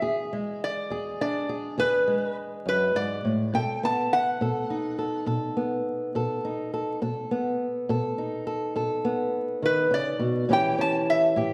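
A 12/8 feel at 69 BPM carries this gritty, swaggering acoustic country blues excerpt, where a metallic, nasal metal-body resonator guitar, played with fingerpicks and a steel bar, carries the slide melody up front over a dark, boxy, fingerpicked old ladder-braced acoustic guitar, moving from E7 to B7 at 3.5 seconds and A7 at 10.5 seconds inside a wet recital-hall reverb laced with vinyl crackle.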